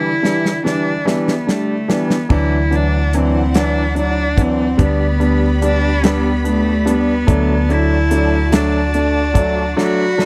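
Melancholic and dramatic, this short cut from a longer six-eight pop ballad moves at a slow 48 BPM, with a straight feel and tuning set slightly low at A4 = 437 Hz. A clear, bowed solo cello carries the melody with smooth, even vibrato, while a concert grand piano plays accompaniment up front, intimate and polished, with deep bass, long sustain and audible action noise. Behind them, a lush, woody string section holds sustained chords in the background. An acoustic drum kit with a tight kick, medium-tuned snare, hi-hat and crash opens with a fill from 0.2 seconds, and a dark, round, punchy fretless electric bass enters at 2.3 seconds on a low D. The harmony moves from Em7 through Dadd9 and G/D to D, and a final drum fill arrives at 9.8 seconds. The sound is dry and close, in the manner of a 1970s studio recording, with little reverb.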